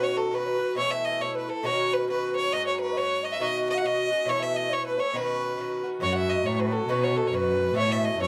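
A moderate studio ambience surrounds this short, lively and cheerful Celtic folk passage in 2/4 with a swung eighth-note feel, cut from a longer piece. Up front, a focused fiddle carries the melody with light vibrato and a smooth top, while a wooden baroque flute with a pure, straight tone and soft attack plays a second line in the background, and a bright, metallic Irish bouzouki picks double-string accompaniment over suspended and added-ninth chords. At 6.0 seconds a bowed cello enters on the bass, expressive with vibrato and portamento.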